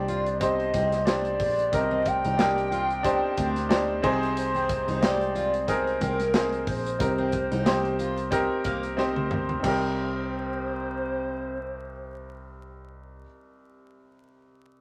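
Vinyl crackle and a moderate studio reverb frame this earnest, driving piano-driven pop excerpt in C minor at 91 BPM with a swung 16th feel, where a brilliant, woody upright piano with audible action noise carries the accompaniment, a hollow, detuned clarinet-like synth lead with chorus and vibrato sings the melody, a full-bodied picked steel-string acoustic guitar with finger squeak plays a riff, a bell-like tine electric piano holds down the bass, and a modern studio drum kit with a tight kick and medium-tuned snare plays from 0.1 s until a fill at 9.0 s leads into a new section at 9.6 s.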